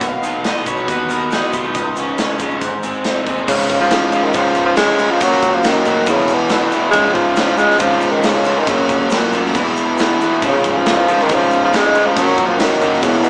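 A wet, large-studio reverb wraps this classic rock excerpt, which sounds like a band playing live in one room, heard through a small speaker. The mood is driving and sunny at 138 BPM in a straight 4/4, with a big acoustic drum kit of punchy kick, medium-tuned snare, hi-hat and bright crash cymbals, plus a grainy, very quiet egg shaker. Behind the drums, a dark, scooped overdriven electric guitar and a lo-fi raw garage guitar play the riff, with a round, foam-muted overdriven bass underneath. A nasal lead guitar with a parked wah adds a second line until 2.6 seconds. At 3.5 seconds a breathy tenor saxophone steps up front with a pop-style solo of subtone, light vibrato, scooped notes and a smooth top. It arrives alongside a double-tracked second garage guitar and a reedy, clean electric piano heard through its built-in speakers, which slips in a brief fill at 9.6 seconds.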